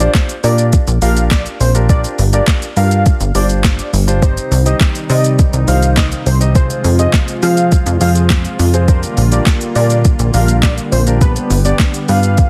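Dance-pop at 103 BPM in a straight 4/4, this driving, energetic excerpt is cut from a longer piece and moves through Bb6, Gm7, Cm, Fm and back to Bb6 before landing on G. Up front, a smooth R&B drum kit with a soft kick, sharp snare, crisp hats, handclaps and shaker is given an overdriven edge, while a plucky analog bass sits alongside it with a punchy, funky, ring-modulated bite and decaying filter plucks. A concert grand piano supplies the accompaniment, intimate and polished with audible action noise and deep lows. Over the top, a thick, bold unison lead carries the melody with a dark, detuned tone, a sub octave and tape echo. At 4.2 seconds a warbling, vintage analog pad enters in the background with smooth, softly chorused sustained chords. Sidechain pumping moves through the lead, piano, bass and pad, and the mix is a dense, heavily limited modern master in a digital ambience.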